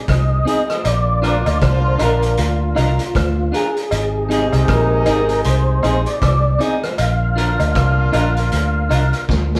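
Recorded live in a moderate stone room, this roots reggae excerpt has a hypnotic, laid-back sway, its swung sixteenths riding over chords that move between Ab and Bb. A round, punchy muted electric bass sits up front beneath a gritty, saturated vintage drum kit with a rolled-off top, while a mellow tonewheel organ carries the melody through chorus vibrato and a slow rotary speaker. A twangy clean electric guitar and a smooth horn section playing a second line both carry slapback echo, a cowbell sits in the background from 0.8 seconds, and a drum fill at 9.3 seconds closes the passage.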